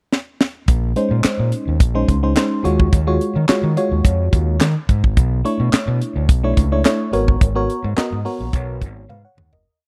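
A dry, close recording with small-room ambience and a 1970s studio character frames this complete piece of early-eighties boogie funk, moving at 107 BPM in a straight 4/4 with a slick, danceable mood. A tight, airy acoustic funk kit opens with a fill in the pickup bar, then settles into a polished mid-tempo boogie beat of high-tuned snare layered with handclaps, a tight kick, hi-hat and toms, placed up front. At 0.7 seconds an overdriven fingered electric bass arrives with a fat, punchy, amped syncopated line peppered with muted ghost notes. At 1.0 seconds a warbling FM electric piano joins, its mellow vintage tone carrying a noise layer and a phaser as it plays syncopated drop2 chord stabs and short fills. Tuned to A4 = 439 Hz, the single verse moves through Bbm11, Ebm11, Bm11 and Abm11, and another drum fill closes the piece as the track fades out from 7.4 seconds.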